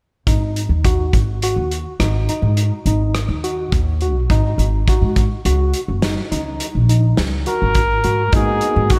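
A lightly reverberant, driving and brooding excerpt of progressive instrumental band music in 7/4 at 104 BPM in G# minor, where a worn, slightly out-of-tune tine electric piano with overdrive, slapback echo and digital delay plays arpeggios over woody, thumpy pizzicato upright bass and an up-front small-room indie drum kit with a punchy kick, before a mellow trumpet with light vibrato takes the melody at 7.5 s and a dark grand piano with audible action noise slips in behind it at 8.3 s as the chords move from G#7(no3) through D#m7 to G#m9.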